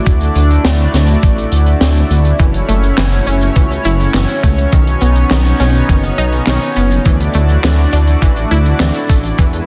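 A rumbling, detuned saw bass pumps up front alongside a thumpy sampler-style electronic kick in this moody, nostalgic synthwave fragment, where a shimmering, retro pulse-width pad sustains chords from Dadd9 through F#m7 and Badd9, an acoustic jazz kit adds cabasa, handclaps, hi-hat and a high-tuned snare, and a round, warbling analog pluck joins in the background with chorused, delayed arpeggios at 2.4 seconds, all within a dense, heavily limited modern master.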